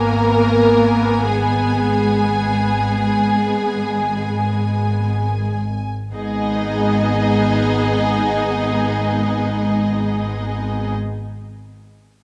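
In free time and slowing over its first 6.1 seconds, this yearning, elegiac fragment of a slow romantic movement for string orchestra rests on G# minor, with a focused violin section carrying the melody above a lush, smooth-topped second violin line, distant violas with light vibrato in accompaniment, rich cellos and an up-front double bass section holding a low G#1, set in a moderate concert hall reverb.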